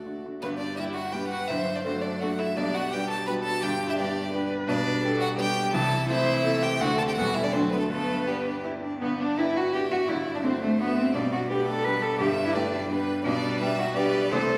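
Heard from further back in a recital hall, this short cut from a longer movement sits in a wet reverb with a 1.4 s decay. It is a quick, cheerful and graceful classical-period piece for piano quintet in G major and 3/4 at 169 BPM, played with a rubato feel. A rich, intimate violin with light vibrato and an airy bow carries the melody up front. A second violin, pure and floating in the background, and a distant cello share the second line. A dark, woody viola and a bright, brilliant baby grand piano, open and forward, supply the accompaniment, while the strings all bow sul tasto, the violins and cello with soft attacks. All five parts play throughout the 14.6 seconds, and the opening section returns at 9.0 seconds over the same G and D7 harmonies.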